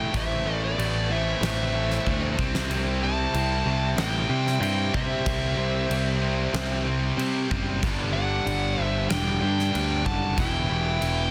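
A straight 4/4 hard-rock groove, heavy and menacing, rides on a gated 80s drum kit with a fat, softly clipped snare, a tight kick and crash cymbal, plus a brief fill at 2.1 seconds, all beneath an up-front, growly, punchy picked bass; a nasal lead guitar with a parked wah carries the melody over a dark octave-fuzz second line, while three picked riff guitars fill in underneath (a cranked stack in the background, plus a double-tracked high-gain part and a hollow-bodied semi-hollow, both very quiet), as the chords move from Am through C and G to Em in a small room under a dense, heavily limited master.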